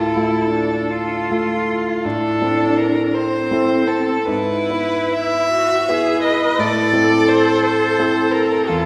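A violin, cello and concert grand piano begin together in this brief, elegiac excerpt from a slow romantic movement for piano quartet, moving in a rubato 12/8 at roughly 46-58 BPM through D minor, A minor and E over G-sharp harmonies. The rich, smooth and even violin carries the melody with vibrato, while the bowed cello sings an expressive second line with soft attacks, vibrato and portamento, and the piano's accompaniment reaches into a deep, natural bass. The solemn playing sits in the lingering reverb of a church or concert hall, with a faint mains hum beneath.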